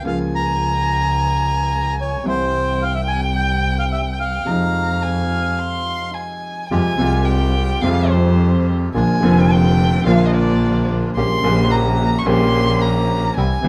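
A dark, reedy bandoneon opens this dramatic, sultry tango excerpt in F minor, carrying the melody up front with a touch of plate reverb, while a distant violin sings a second line alongside it with vibrato and portamento. A bright baby grand piano supplies the accompaniment with a brilliant, long-sustaining tone, and a bowed double bass joins almost at once, clear and focused, its smooth top and vibrato sitting close to the listener. The pulse sits around 108 BPM in 4/4, though the feel is rubato and pliant, moving through harmonies such as Bbm/Db, C and Fm7. After a brief break at 6.1 seconds, the violin takes a solo from 6.7 seconds, its expressive bowing now leading over Fmadd9, Bb and Gdim/Bb. Behind it, a second bandoneon part adds bright stabs in the background, and a moderate studio reverb gives the ensemble a sense of room.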